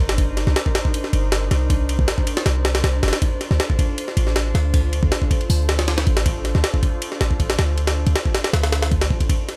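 A straight 4/4 drum and bass groove at 158 BPM drives this frenetic, nostalgic jungle excerpt, built on a gritty, compressed, pitched-up sampler-style kit with a thumpy kick, high-tuned snare, hi-hat and ride, sitting up front with studio reverb from 0.1 seconds. Beneath it, a deep, boomy 808-style bass with a sine body, noise layer and tube saturation anchors the low end until 9.2 seconds, while an airy, breathy pad with detuned, chorused tones, a moving notch and slow attack sustains soft chords that shift from Cm9 to Dm7 at 3.2 seconds. The mix is dry overall, and the tuning sits slightly flat at A4 = 435 Hz.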